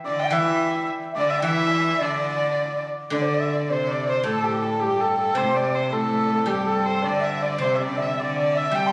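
Captured on a phone in a concert hall with moderate reverb and compression, this graceful, pastoral Chinese chamber excerpt in free rubato places a dark, intimate erhu melody with portamento and light vibrato up front beside a focused, clear cello, while a breathy bamboo xiao and a shimmering hammered dulcimer sit in the background over a silvery, fingerpicked guzheng accompaniment, the music moving into a new section at 3.1 seconds.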